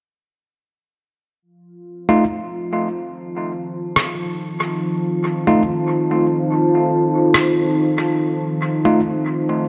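In free time, this spacious, hazy ambient dub excerpt in F mixolydian opens on an F7 as a bright, bell-like tine electric piano plays low-pass-filtered stabs with dub echo from 2.1 seconds, joined by a deep, moody pad of detuned sawtooth and sine with a sub octave, chorus and its own reverb, sustaining evolving chords, while a muffled, pitched-down, sampler-style rim click with dub echo sits up front from 4.0 to 7.5 seconds, the whole set in a moderate echo-chamber reverb.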